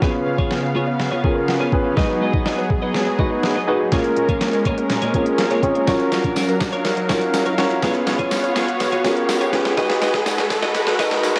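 Dance-pop at 123 BPM with a summery, carefree mood, this short build-up sets a warm grand piano and a smooth, airy supersaw, both pumping with sidechain, over a smooth R&B drum kit whose knocking kick, deep snare and tape-softened hats sit up front, moving through C#7, G#m7, A#m7 and F#maj7. A very quiet hollow, bouncy square pluck plays arpeggios while a bright, twangy twelve-string electric guitar riff shimmers with lush chorus in the background. A faint riser enters at 1.4 s and a jingly tambourine at 5.9 s, all within a springy reverb and the filtered character of a home cassette recording, with a drum fill and filter sweep running throughout.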